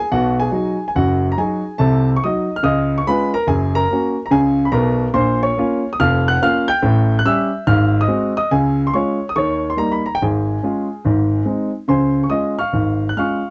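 A warm, smooth grand piano sits up front and plays alone in a swinging, playful stride jazz excerpt at 143 BPM in 4/4, spanning F1 to G6 with a lilting swung feel, moving from F# major into Db major at 5.2 s through chords such as B6, Cdim7, Bbm and A7, its vintage tone caught in a dry, close 1970s-style studio sound with light reverb before a new section begins at 11.9 s.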